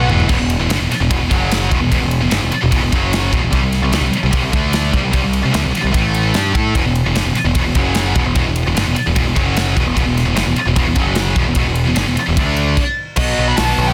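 A dense, heavily limited modern master with light reverb carries this dark, heavy metal excerpt, where two bright, high-gain guitars drive a riff over Em, F#5, C5 and D5 chords alongside a punchy, overdriven picked bass sitting up front. An airy, polished studio drum kit with a tight kick and medium-tuned snare kicks off with a fill, then the whole band halts at 12.8 seconds. After a brief flash at the very start, a distorted lead guitar with digital delay returns at 13.2 seconds on a B chord, just as the passage cuts off.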